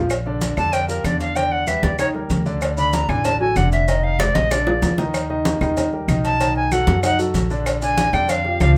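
Set in a moderate club reverb, this lively, sophisticated Afro-Cuban jazz passage, cut from a longer piece, features an up-front silver concert flute, bright and reedy with vibrato, soloing from 0.6 s. A warm concert grand piano with audible action noise and long sustain accompanies it, while a thumpy pizzicato upright bass sits up front. Ringing congas, tight high-tuned cowbell and bongos, woody claves in the background and grainy, distant maracas fill out the percussion, with a drum fill between 4.2 and 5.1 s.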